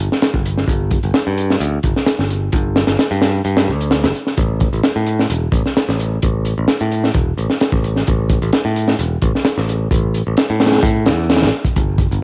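A cassette recording, vinyl crackle and light reverb give this short, gritty, funky breakbeat clip at 130 BPM a homemade grain, as a crunchy, up-front acoustic kit with a punchy kick, high-tuned snare, hi-hat and a dark, rolled-off top rides a lightly swung 16th-note feel beside a bright, growly picked electric bass, pushed through tube saturation, that starts at 0.0 seconds and holds the low end to the close at 12.2 seconds.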